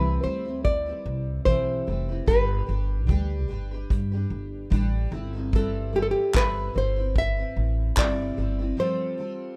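A fingerpicked nylon-string guitar carries a heartfelt melody with audible finger squeak up front in this sunny acoustic pop excerpt at 74 BPM in C major, over a dark, full-bodied, double-tracked picked steel-string guitar, a woody, thumpy pizzicato upright bass on gut strings, and an unplugged drum kit of handclaps and punchy kick that enters at 0.6 seconds, all in a rough home demo mix with studio reverb, moving from Cmaj7 through G to a brief Fadd9 break at 8.8 seconds.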